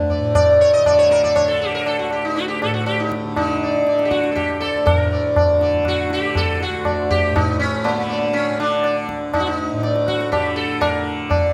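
Set in a straight 3/4 at 120 BPM, this meditative, devotional Hindustani classical excerpt in raga bhairav on D opens with a softly plucked tanpura drone at 0.0 s. The up-front sitar, bright and buzzing with shimmering sympathetic strings, carries the melody from 0.1 s alongside a high-tuned tabla whose short-ringing strokes sound close and dry. The performance sits in the generous reverb of a recital hall, and the piece moves into a new section at 4.9 s.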